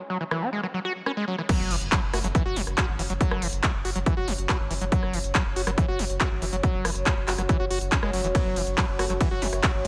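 A straight four-four psychedelic trance groove comes from the techno drum kit, with its smooth hats, handclaps, rim clicks, ride and crash, arriving almost at once beneath a deep, moody ambient pad that opens the cut at 0.0 seconds. At 0.1 seconds a screaming, squelchy acid line enters, sawtooth-edged, resonant and distorted, with chorus, digital delay and sidechain pumping, and a filter sweep runs across it before the drop lands at 1.5 seconds. There the heavy, tape-warm electronic kick arrives up front alongside a very quiet electronic impact, while a round, sustained analog bass settles low underneath. A juicy, faint blip pluck with a phaser adds a second line in two brief appearances, once as the drop lands and again near the close. The pad stays dark and slow-blooming, thickened by unison, wave-folding and ring modulation, with chorus, its own reverb and sidechain pumping, and the whole excerpt, set in light digital ambience, feels intense and alien.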